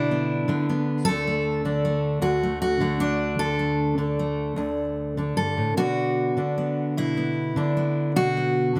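A bright, full-bodied fingerpicked steel-string dreadnought guitar sits up front alone in this gentle, nostalgic folk fragment cut from a longer piece, moving at a rubato 51 BPM in 6/8 in D major from Bm to D and back to Bm, with audible finger squeak captured by close, detailed microphones and a touch of light reverb.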